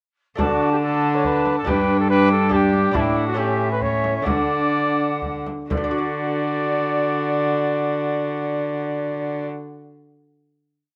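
A close-miked, warm cornet carries the melody of this short, stately Renaissance-style consort dance in D major and 3/4, moving at 120-142 BPM and slowing from 2.3 to 5.7 seconds before settling on a final chord. A pure, distant alto recorder with a tongued chiff and a dark, nasal bowed viola shadow the tune in sustained chords, while a rich, gut-strung cello holds the bass up front. A delicate fingerpicked lute rolls its double-strung chords in the background, and a deep frame drum played with soft hands keeps a courtly dance rhythm until 5.9 seconds, all in a light reverb.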